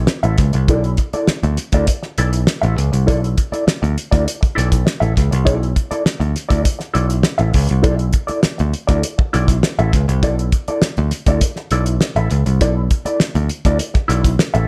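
A punchy picked electric bass opens this cool, driving funk excerpt at 0.0 seconds, sitting up front at a straight 101 BPM in B minor over a single Bm11 chord. A cloth-damped acoustic drum kit joins at 0.1 seconds with a fat snare, tight kick, hi-hat and a rolled-off top, while a mellow, dark, compressed electric guitar plays clean accompaniment through a wah, set lower in the mix. Light reverb sits over the whole as all three parts carry on to 14.7 seconds.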